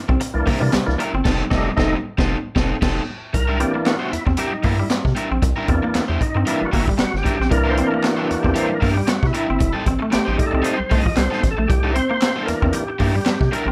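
A gritty funk groove at 115 BPM in C mixolydian, with a swung sixteenth feel, opens at 0.1 s with a crunchy overdriven guitar in accompaniment, a twangy guitar at the edge of break-up playing a riff through spring reverb, and thick, percussive tonewheel organ stabs with key click, light overdrive and a fast rotary speaker. Beneath them sit a rubbery, nasal square-wave bass and a roomy, distant-sounding big-band drum kit with dark cymbals, a high-tuned snare and a boomy kick, while hollow, vintage group handclaps sit in the background from 0.7 s. After a band accent, the organ takes a solo from 3.3 s to the end over C9 and F9 chords, with a moderate club reverb around the whole band.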